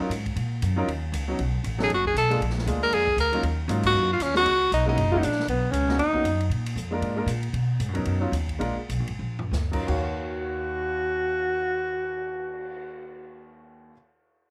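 A swung 4/4 pulse drives this short cut from a longer small-group jazz performance in the swing and bop vein, cool and late-night in mood. Pizzicato upright bass with steel strings sits up front, woody in tone, beside an open acoustic drum kit with dark cymbals, a medium-tuned snare and a boomy kick, while a clear baby grand piano comps intimately, its action noise audible. The tenor saxophone carries the melody from 1.8 s, present and soft-attacked with light vibrato and a slapback echo, and the band hits an accent together at 3.8 s. A breathy alto saxophone takes the second line with subtone, vibrato and scooped notes, first for a brief phrase and then again from 9.9 s, after the tempo slows and a drum fill leads into the closing section. Light reverb gives the studio room a natural feel.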